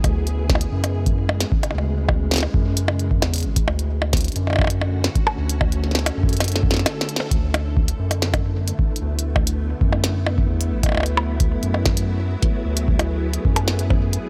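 A dry, gritty hardware sound with little reverb frames this wistful, intricate IDM passage, cut from a longer piece and moving at 132 BPM in a straight 4/4. A soft, silky string machine with ensemble chorus holds slow-attack sustained chords in a mellow vintage tone, drifting through C#m7/D, Dmaj7, E7sus4/D and F#m11/D over a repeated section. Beneath it, a round, dark analog bass with a fast attack sits low and sustained, while a deep, tape-warm electronic kick gives the pulse its weight. Up front, a glitchy kit re-recorded in a small room adds clicky hats, percussion blips and a tiny snare. A drum fill arrives at 6.4 seconds, leading into a short break and a band accent at 7.2 seconds before the section begins again.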